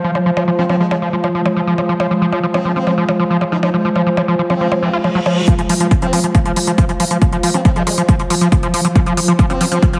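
A squelchy, screaming acid line in F minor opens this alien psychedelic trance excerpt at 138 BPM, distorted and chorused with digital delay up front over a swarming, detuned granular drone and a warbly, lo-fi tape-like pad with phaser, all three pumping to the sidechain, as overdriven percussion blips and smooth hi-hats enter at 0.2 seconds, a formant-sweep wobble bass murmurs in the background, and a reverse cymbal at 4.9 seconds leads into a heavy overdriven kick at 5.5 seconds for the build-up, the whole mix sitting in a lush hall and heavily compressed like radio.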